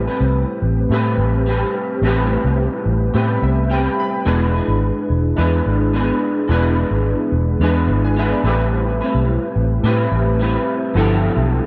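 Mellow and hazy, this short indie and bedroom pop excerpt drifts over Am9, E7 and G13 chords with a slightly broken-up electric guitar, played through a small old amp with an ensemble chorus and warbly pitch drift. Lo-fi synth keys with a nostalgic, detuned character and a chorus effect play throughout and add a brief fill from 3.1 to 4.3 seconds. A round, foam-muted fingered electric bass sits up front and is the loudest part, all under light reverb in a dark production.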